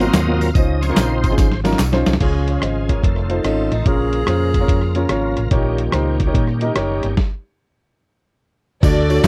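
A bright, lightly overdriven tonewheel organ with a slow rotary speaker opens this reverent, hopeful uptempo gospel swing with a solo over tambourine and handclaps, alongside a vintage grand piano, a round, punchy hollow-body electric bass and a muffled, thumpy lo-fi drum kit, while a breathy tenor saxophone takes the melody at 3.4 s, the organ drops out at 7.2 s, and a lush string section enters at 8.8 s, all captured in a dry, close 1970s-style studio sound.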